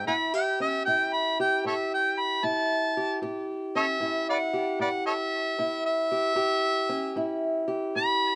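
Gritty and soulful, this short acoustic country blues excerpt moves at an easy 76 BPM in 4/4 with a swung eighth-note feel, tuned slightly below standard pitch at A4 = 435 Hz. A mellow harmonica carries the melody as a solo throughout, sitting up front with a vintage, jazz-inflected voice, light vibrato, tongue slaps and scooped notes. Beneath it, a fingerpicked acoustic archtop guitar supplies accompaniment with a boxy character, also placed close in the mix. The harmony rests on an A7 chord arriving at 0.1 seconds. Recorded outdoors with light reverb, the duo sounds intimate and unadorned across its 8.4 seconds, cut from a longer piece.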